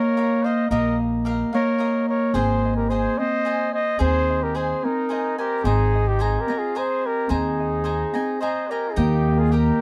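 A pair of classical-style trumpets opens this romantic, proud mariachi passage in three, joined from the start by a crisp, bright picked cavaquinho and a mellow, ringing Celtic harp playing fingerpicked arpeggios. The dark-toned lead trumpet sits up front with the melody, while the second trumpet, vintage and softer in the mix, carries a supporting line beneath it. At 0.7 seconds an upright bass enters, its pizzicato steel strings woody and growly, and it sits prominently forward. The harmony moves from Ebadd9 through Ab and Abadd9 before landing on Eb at 9.0 seconds. The dry, close sound recalls a 1970s studio, and the passage is a short cut from a longer piece.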